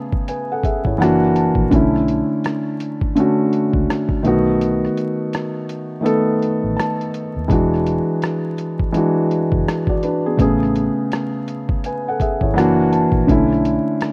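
A mellow, felt-muted upright piano sits up front in this nostalgic, reflective lo-fi hip hop fragment, adding fills at 0.3 and 6.4 seconds over a compressed, pitched-down sampler-style kit with a thumpy kick, hi-hat and rim click and a dark, round, foam-muted electric bass that enters at 0.9 seconds, the whole swung groove wrapped in a rough home-demo mix with light reverb and vinyl crackle.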